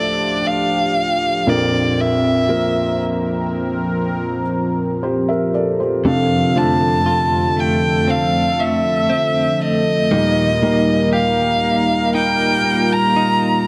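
Heartfelt and tender, this slow pop ballad excerpt at 59 BPM in F major places a rich, vibrato-laden bowed violin melody up front over a soft felt-muted upright piano with audible action noise and a bright, evolving sawtooth pad with chorus, while a clean, compressed direct-recorded electric guitar enters at 6.0 s playing arpeggios with tremolo and tape echo, inside a dark, warm production with moderate plate reverb as the chords move from Dm through Bbsus2 and F6 to Eb.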